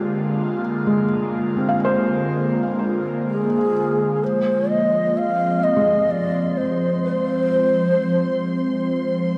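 Ambient and reflective at 64 BPM in 3/4, this spacious excerpt in F dorian opens on an airy, breathy pad holding chorused, phased chords with a faint detuned shimmer, while a felt-muted upright piano spins intimate arpeggios through delay, its action noise audible. A hollow, bamboo-toned shakuhachi carries the melody from 3.3 s, tongued with a soft chiff and vibrato, as the harmony moves from Fm6 to Fm. From 4.2 s a rich, bowed violin section fades in high above as a close, intimate texture, the pad's filter sweeps, and a lush hall reverb bathes the whole.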